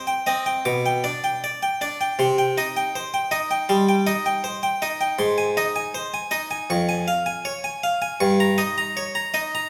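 A solo harpsichord, bright and airy with a plucked Flemish-style voice on a single set of strings, sits up front in a moderate recital-hall reverb. It plays a radiant, flowing baroque-style suite movement at a rubato 80 BPM in 4/4, moving from C minor harmonies into A-flat major at 5.2 s across a range from F2 to D6, in this brief passage cut from a longer piece.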